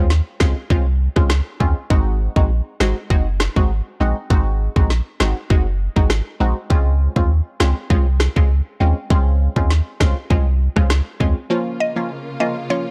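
Dancehall with a sultry, bouncy mood, this short cut from a longer piece rides a straight groove and a dark production with little reverb. An up-front electronic drum kit of tight kick, woody snare and rim click runs alongside a deep sine sub bass whose pitch-drop attack gives each note a punch before it sustains mellowly. Clipped sawtooth-and-triangle chord stabs, wave-folded and treated with chorus and a moving notch filter, sit lower in the mix and outline Dbmaj7 and Ab7 harmony. At 11.5 seconds the music shifts to Bbm as a lush, bowed studio string section enters quietly with vibrato and a smooth top, pumping under sidechain. A round, percussive FM mallet pluck with a noise layer and chorus joins up front at 11.8 seconds, adding a brief, narrow melodic line.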